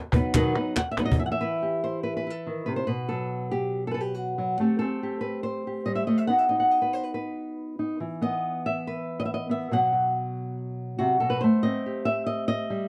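A straight four-beat pulse opens this flamenco excerpt, set up briefly by a woody cajon with faint snares and hard hands, compressed and saturated up front, alongside crisp, close palmas hand claps. The percussion gives a short fill at 1.0 seconds, and both cajon and palmas stop at 1.2 seconds, leaving the fingerpicked flamenco guitar to carry the rest alone until 12.9 seconds. The guitar sits up front with an acoustic, warm tone and carries the melody across a broad range from its low strings to high notes. Its harmony circles back to a B chord again and again, passing through Em, Am7 and E5 on the way, which gives the music a passionate, mournful colour. The sound is dry and close, with a modest booth ambience and the plain intimacy of a 1970s-style studio recording.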